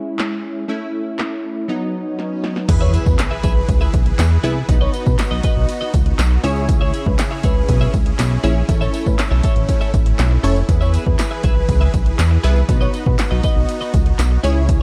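A funky, detuned polysynth comp with pumping chorus opens this energetic, bittersweet dance-pop clip at 120 BPM, joined by a dry, punchy analog drum machine, and after a very quiet swell and drum fill the drop lands at 2.7 seconds with a glossy, nasal synth bass up front, huge bright supersaw chords, a clean twelve-string electric guitar riff, a jingly tambourine in the background and a smooth, expressive synth lead with vibrato and delay, all moving through C#m, A, B and E in a dark, warm, nearly reverb-free mix.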